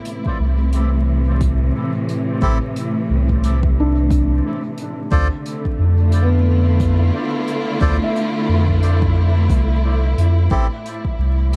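A meditative, hazy stretch of ambient dub, cut from a longer piece, where a lush bowed string section holds sustained chords over a deep, round sub bass that sits up front with tube saturation and a layered electronic kick tucked into the background. A felt-muted upright piano plays mellow arpeggios far back in the mix with dub echo, while a brushed hi-hat carries the same echo at a faint level. From 2.4 seconds a reedy, breathy melodica adds echoing stabs until 10.7 seconds, all within a dark production with studio reverb and vinyl crackle as the harmony moves from A minor to D minor seventh.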